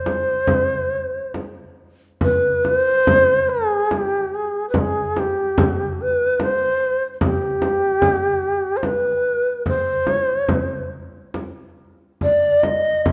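Caucasian folk lament, mournful and solemn, in a free-flowing rubato triple metre, where an airy, bright bamboo shakuhachi carries the expressive melody up front with vibrato and a crisp, chiffy attack, a deep frame drum sits close beside it from 0.1 seconds, and a moderate reverb of a scoring stage surrounds this short excerpt as it moves into a new section at 2.2 seconds.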